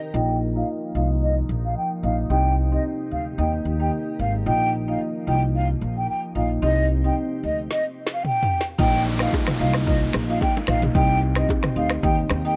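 Afrobeats with a joyful, romantic glow, this excerpt sets a breathy, hollow concert flute melody with tape echo over a glassy, warbling FM pad, woody rosewood-bar marimba and an up-front pizzicato upright bass, all under a filter sweep until 8.8 seconds. At 7.7 seconds the groove stops for a drum fill as the layered deep house kit enters with its deep kick, snare and vintage 12-bit sampler grit. Close, dry congas and bongos and an electronic downlifter join from 8.8 seconds in a dry, gritty mix.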